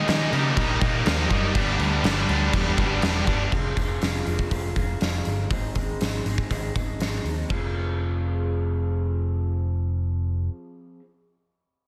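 Brooding and dark, this quiet-loud alternative rock fragment opens with picked riffs from a double-tracked biting overdriven guitar and two distorted electric guitars in the background, a dark octave-fuzz lead guitar melody, and a very quiet, flute-like mellow tonewheel organ with key click and slow rotary speaker, underpinned by a growly, up-front overdriven picked bass and an oversized low-tuned drum kit with a fat snare and punchy kick in a bright stone room, until the riffs give way at 3.5 seconds to lo-fi, slightly broken-up arpeggios from an electric guitar through a small old amp with lush chorus, and the drums stop at 7.6 seconds, leaving bass and arpeggios in a dense, heavily limited modern master.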